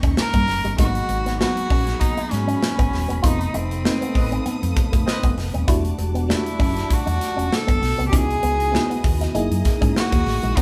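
A moderate studio reverb places the band together in one room, giving this polished 1980s jazz-funk pop fragment a breezy, urban feel with a light swing on the sixteenths. An up-front, airy acoustic drum kit with a tight kick, medium-tuned snare and hi-hat anchors the groove, while a dark, round hollow-body bass holds down the low end. A glassy FM electric piano with a bell-like attack and a warbling chorus supplies the chords, and a bright, twangy envelope-filtered guitar riff sits in the background alongside lush bowed strings that also stay in the background. From 0.2 seconds a single cello carries the melody up front, its tone rich, nasal and earthy with a biting, boxy edge and light vibrato. A band accent arrives at 3.2 seconds, and within it a distant, roomy horn section briefly adds a warm second line from 4.1 seconds, as the extended harmonies drift through ninth, eleventh and thirteenth chords.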